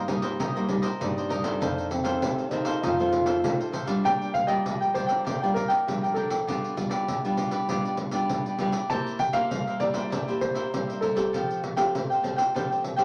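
A breathy, mellow trombone with light vibrato and scooped notes opens this playful, lively samba and choro piece in Bb major at 99 BPM, over crisp picked cavaquinho, bright fingerpicked nylon-string guitar and jingly, band-limited pandeiro, falling away by 3.7 seconds before an intimate baby grand piano carries the melody from 4.1 to 11.6 seconds with audible action noise and long sustain, set in a wet studio reverb.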